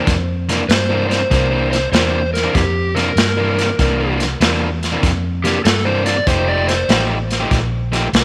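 A dark, overdriven slide guitar leads this laid-back, rollicking electric blues shuffle, playing a solo line high above the band from the first moment until it drops out at 7.0 seconds. Beneath it, a second overdriven electric guitar picks a dark riff up front, carrying on to 8.1 seconds. A vintage fingered electric bass, foam-muted and round, holds down the low register, while a crunchy breakbeat drum kit of kick, snare and hi-hat sounds gritty and saturated, with a tight kick, a medium-tuned snare and a rolled-off top. The swung groove rides on a C9 chord before moving to F9 at 6.3 seconds, and a moderate plate reverb lends the short cut from a longer piece its sense of space.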